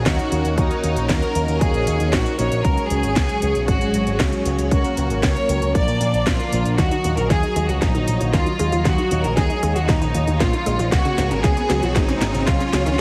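Melodramatic and danceable, this italo disco excerpt in Eb minor at 116 BPM sets a clear, vibrato-rich studio violin section carrying the melody with delay over lush string-machine chords with phaser and ensemble chorus, dark background synth-brass stabs with chorus and digital delay, a punchy picked electric bass with an envelope filter, a layered electronic kick, and a house kit of cracking snare and crisp hi-hats, all in light reverb, before a drum fill and a nasal analog pluck arpeggio with 12-bit grit and a filter sweep arrive at 6.8 seconds, followed by a very quiet riser at 9.6 seconds, under a heavily compressed radio sound with vinyl crackle.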